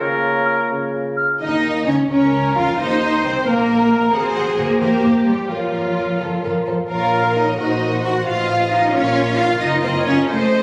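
An urgent, dramatic classical-period movement in Bb minor, in a quick 6/8 at 88 BPM, opens with a clear oboe up front, a distant clarinet, a mellow bassoon and a vintage-toned French horn section holding sustained chords, while a hollow concert flute adds a brief high line at 0.5 s. At 1.4 s, bowed violin sections take up an expressive melody and a second line over a rich cello bass and a double bass section, and a lush, up-front viola section joins at 2.1 s as the harmony moves through diminished and dominant chords. The orchestra sits in a moderate scoring-stage reverb and sounds as if captured on a phone in the room, in a passage cut from a longer piece.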